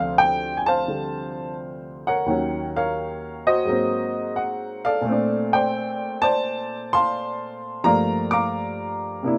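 A solo upright piano opens this short cut from a longer jazz piece, its woody, natural tone sitting up front in the mix. The mood is relaxed and playful, moving at 86 BPM in 4/4 with a swung eighth-note feel. The piano covers a broad span from D2 up to D6, carrying the whole performance alone for its 9.4 seconds. The harmony starts on Dm7, slides to Ebm7 and Ab9, settles on Bbmaj9 at 5.1 seconds, and closes on Gm9. A light reverb gives the instrument a gentle sense of space while keeping its character close and intimate.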